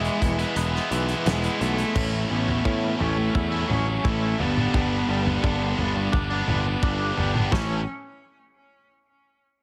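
A straight 4/4 pulse drives this restless, cathartic quiet-loud alternative rock passage, cut from a longer piece, where a loose indie drum kit with a fat snare, punchy kick and dark cymbals sits beneath a growly, up-front picked bass, two bright guitars (one overdriven, one high-gain) play riffs, a twangy clean guitar with tremolo plays arpeggios in the background, and a focused bowed cello carries a vibrato melody, all in light reverb as the chords move from E to A at 2.0 seconds, to G, and back to A at 7.5 seconds.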